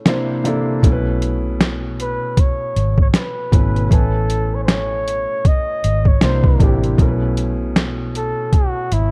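A breathy, whispered flugelhorn enters at 2.0 seconds with a jazz-style vibrato melody over a felt-muted upright piano carrying cassette-tape softness and audible action noise, a gritty, pitched-down boom bap drum kit with a thumpy kick sitting up front, and a round, foam-muted electric bass, in this mellow, dreamy lo-fi hip hop excerpt at 78 BPM with a swung feel, moving through C9, B9sus4 and Amaj9 in a dark, small-room sound.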